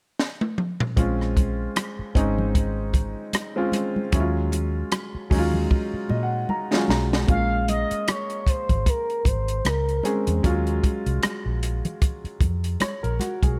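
Lush 1970s-style soul in Bb minor at 76 BPM, cinematic and bittersweet, with a swung 16th feel, cut from a longer piece. A compact cocktail kit with a high-tuned snare and punchy kick opens with a fill at 0.2 seconds, then a clear concert grand piano, a dark, foam-muted fingered electric bass and soft-handed, damped congas set in the background join over Bbm9 and Ebm11 chords, with drum and piano fills leading into the second half. At 7.3 seconds a smooth, sawtooth synth lead with vibrato, chorus and analog delay sings a sustained, expressive line until 10.3 seconds, all in a small-room ambience.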